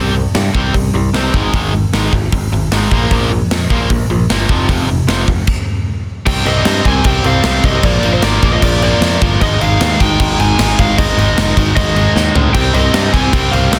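Driving straight 4/4 at 153 BPM in C minor, this urgent, aggressive punk rock excerpt from a longer piece opens on power chords. Two overdriven rhythm guitars carry the riff, a bright semi-hollow-body part in front and a mellower one set in the background, over a growly, direct picked bass. A big, natural-sounding acoustic kit sits up front with a punchy kick, a medium-tuned snare, hi-hat, toms and bright crash cymbals. The band halts for a brief stop at 5.5 seconds, and at 6.3 seconds a warm, overdriven lead guitar through a small cranked amp takes up a high melody as the chords move from Cm through Bb and Ab. During a short drum fill, a very quiet, thick, double-tracked fuzz guitar joins the riff at 12.5 seconds. The sound is dense and heavily limited with light reverb.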